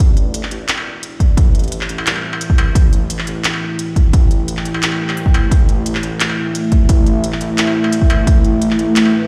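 Half-time drum and bass at 174 BPM in A minor, this tense, cinematic fragment of a longer piece works as one continuous build-up, resting on an A5 chord from the start. A deep, moody ambient pad of detuned sawtooth and sine layers with a sub octave holds slow-attack chords throughout, coloured by chorus, its own reverb, vintage 12-bit sampler grit and sidechain pumping, while a filter sweep runs across it for the full length. Beneath it, a rumbling, beating detuned saw bass sits low and high-passed in the background. An industrial drum kit of handclaps, crisp hats and struck metal plays from the opening, and a heavy, tape-warm electronic kick enters up front at 1.2 seconds and drops out at 8.3 seconds. The drums carry the sound of being re-recorded in a large room, and the whole mix feels as if played on a big sound system in a bare stone room.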